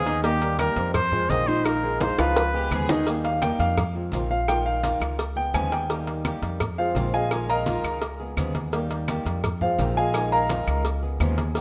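The grand piano stands out most, its present, long-sustaining arpeggios carrying a slapback echo and taking a solo from 3.1 s through to the end of this short cut from a longer Cuban son and guajira piece in Eb major at 170 BPM. A breathy, whispered trumpet with vibrato and a soft attack opens the melody up front, stopping at 2.9 s, shortly after a bowed chamber violin section, smooth-topped and played sul tasto, slips in quietly in the background at 2.5 s, with a drum fill bridging into the solo. Underneath, a growly, thumpy pizzicato upright bass sits up front beside a fingerpicked flamenco guitar with fresh strings. The percussion bed pairs tight, high-tuned cowbell and bongos with low-tuned, thick-skinned congas, grainy, dry maracas and woody claves set back in the mix. The chords cycle through Eb, Fm7, Bb7sus4 and Db7, giving a relaxed, danceable feel, all heard in a lush hall reverb with a rough home-demo quality.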